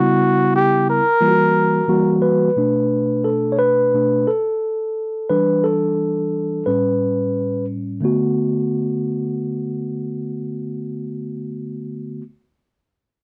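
A breathy, close-miked flugelhorn opens this cool, nocturnal hip hop piece with a short jazz-style solo line, its scooped notes sitting up front before it falls silent at 2.2 seconds. Underneath, a mellow tine electric piano carries the accompaniment throughout with a clean, direct tone, then takes its own solo from 2.6 to 8.0 seconds. The groove moves at an unhurried 88 BPM in 4/4 with a swung sixteenth-note feel. The harmony sits in B minor, starting on C#m7b5 and F#7b9 before settling into Bm7, Em7 and A9 and returning to Bm7 at 8.0 seconds. The sound is dry and gritty, with light reverb, and the piece is cut from a longer work.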